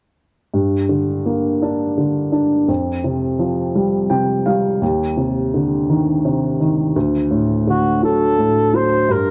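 A dark, warm production bathed in a moderate plate reverb frames this aching, dramatic pop excerpt in G minor, moving slowly in 6/8 at 56 BPM. A mellow, woody upright piano carries the accompaniment from 0.5 seconds through Gm, Fsus2, Cmadd9/Eb and D, adding a short fill around 3.8 seconds. At 7.7 seconds a flugelhorn enters with a punchy, roomy solo melody shaded by vibrato.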